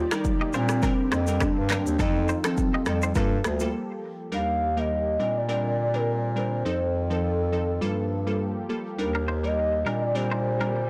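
A swung afrobeats groove in 4/4 at 103 BPM drives this smooth, hypnotic passage cut from a longer piece. An electronic afro-pop kit sits up front with a deep kick, finger snaps, handclaps, rim click and shaker, with soft clipping on the snare, alongside very quiet, high-tuned vintage congas; both drop out by 3.7 s for a break. A hollow, woody clarinet-like synth lead with vibrato, chorus and delay carries the melody over Ebmaj7, Bb69, F7 and Gm9 chords, held by a warbling sawtooth pad with chorus in the background. A bass clarinet plays the bass line up front in a classical style, while a glassy wavetable pluck with a fast attack, filter sweep and chorus adds crystalline accompaniment throughout. A twangy, clean electric guitar picks a compressed riff with delay in the background at the start and returns near the end, and a faint electronic swell appears at 9.8 s. The whole recording has a blown-out, overdriven character within light digital reverb.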